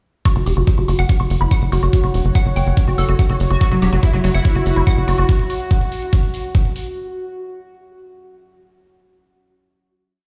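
A four-on-the-floor electronic kick drives this short psychedelic trance piece at 143 BPM in straight 4/4. The kick is knocking and up front with a touch of studio reverb, and quieter, overdriven, metallic closed and open hi-hats sit with it. Beneath them, a tight, punchy sequencer bass rolls in sixteenth notes with a sawtooth-and-square filter pluck whose fast attack decays into a mellow tone. A woody, wave-folded pluck plays an accented acid line over 32 steps, warbling through chorus, sidechain pumping and tape echo, and from 1.3 seconds a deep, moody ambient pad of detuned sawtooths, sub octave and ring modulation shifts its chords slowly in the background. At 3.6 seconds an airy supersaw stab repeats a riff in sixteenths over a pedal note, its filter sweeping through a phaser and tape echo, and at 4.2 seconds a bubbling, resonant stepped-filter texture holds a high F#4 with a long release. 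The mood is intense and driving, and the mix rings with the stone-room sound of a big sound system in a bare space.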